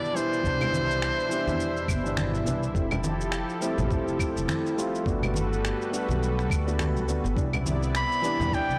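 Sunset chillout in C major at 104 BPM with a swung sixteenth-note feel, this smooth, warm excerpt moves through Cmaj9, Fmaj9 and Gmaj9 as a dark, mellow baby grand piano with long sustain and delay sits alongside a thick, warbling, detuned sawtooth pad that is slow-attacked and chorused. An up-front soprano saxophone with vibrato and scooped, jazz-style notes carries the bright, delayed melody until 2.5 seconds and returns at 8.0 seconds, while a woody pizzicato upright bass with tube saturation and a thumpy, gritty sampler-style kick enter at 0.4 seconds. Compressed electronic cabasa, claves and finger snaps with a clipped snare run throughout, saturated congas sit in the background, and the whole recording is blown-out and overdriven inside a moderate plate reverb.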